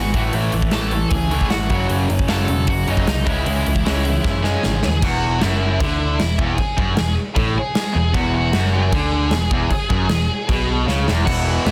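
An up-front acoustic rock kit drives this rebellious, rowdy punk rock excerpt at 154 BPM in straight 4/4, its punchy kick, medium-tuned snare, hi-hat and bright crash cymbals ringing in a big room. Beside it, a growly, amped, overdriven electric bass, picked, sits prominently in the low end. Three picked rhythm guitars play riffs in the background: a double-tracked high-gain distorted part, a raw garage part with overdrive, and a tight distorted one. Over them, a high-gain lead guitar with a warm distorted tone carries the melody in E major, over chords moving from A through F#m and C#m to E, which arrives at 5.0 seconds. Drum fills mark the turns at 4.2 and 10.9 seconds, and the dry sound is dense and heavily limited.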